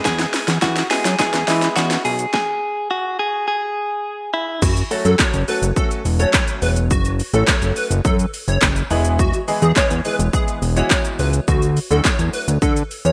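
Driving and energetic, this dance-pop piece opens with a build-up in which a clean, direct-recorded electric guitar with spring reverb and delay carries the melody over a clear baby grand piano with lush chorus and sidechain pumping, a punchy, overdriven house drum kit with gated reverb and a fill, and a fat, saturated analog bass, then after a stop at 2.3 seconds the drop at 4.6 seconds hands the melody to a catchy, full-bodied plucky unison lead with ensemble chorus and delay, within a bright 1980s-style digital production.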